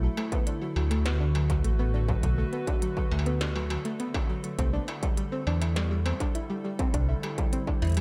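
IDM at 102 BPM, glitchy and melancholic, this cut from a longer piece drifts from Bm7 to Cadd9 at 4.6 seconds. A warbling, nostalgic tape-like pad holds chorused chords while a soft, round pluck spins arpeggios through chorus and dub echo, over an up-front, rumbling detuned saw bass and a pulsing gated texture tucked in the background. An industrial kit with clanging snare, crisp hats and struck metal runs through tape echo from 0.2 seconds, joined at 0.3 seconds by a distorted electronic kick placed up front, all within an echo-heavy mix and digital ambience.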